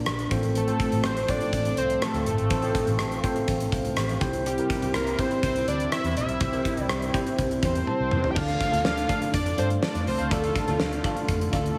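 A worn, slightly out-of-tune tine electric piano and a detuned sawtooth pad with chorus open this uplifting, glossy 1980s-style pop excerpt, joined at once by a gated, big-room drum kit with a fat snare and a dark, foam-muted fingered electric bass. A fat analog lead with vibrato and digital delay carries the melody from 0.6 seconds over chords moving from F/A to C. After a piano and drum fill, a twangy, direct-recorded clean electric guitar with lush chorus plays a background riff from 8.4 seconds as the harmony shifts to Dm, all inside a lush hall reverb.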